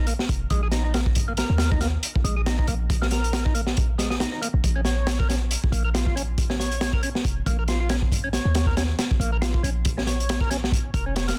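A crunchy breakbeat kit sits up front in this raw, energetic breaks cut, its punchy kick and high-tuned snare sounding dark and rolled-off in a small room over a lightly swung groove. Beneath it, a deep, boomy 808-style sine bass with a noise layer, a fast attack and a decaying body anchors the low end. A fat, lightly overdriven tonewheel organ plays a percussive riff through a slow rotary speaker and dub echo, while the harmony shifts from Bb5 to Db at 4.6 seconds in a dry, dense, heavily limited mix.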